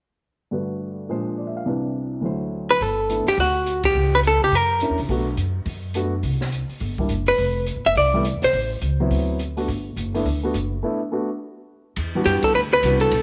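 Warm and playful, this short cut of small-group swing and bop moves at a brisk 209 BPM in 4/4 with a lilting swung feel, centered in G major. A dark, mellow baby grand piano opens alone at 0.5 seconds, laying down accompanying chords up front. At 2.8 seconds the woody upright bass, plucked on gut strings with a thumpy presence, arrives alongside an open acoustic drum kit of hi-hat, boomy kick, high-tuned snare and dark ride cymbal in a small room. A clean, picked hollow-body electric guitar carries the melody in short, compressed phrases, sitting forward in the mix. The band hits an accent early on and drops into a break from 10.8 seconds before the guitar returns, all set in a moderate plate reverb that lends a natural sense of space.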